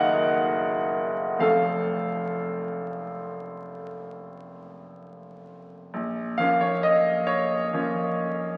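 A slow, rubato feel in 9/8 at about 38-46 beats per minute (dotted quarters) carries this brief romantic nocturne fragment in B-flat minor, wistful and mournful in mood, cut from a longer piece. A bright grand piano plays alone throughout, its brilliant, smooth tone sitting up front with long sustain, ranging from F1 to Gb5 as the harmony moves from Ebm/Gb to F and settles on Bbm at 5.9 seconds, where a new section begins. The sound is vintage, steeped in a wet recital hall reverb and the crackle of a very old 78 rpm record.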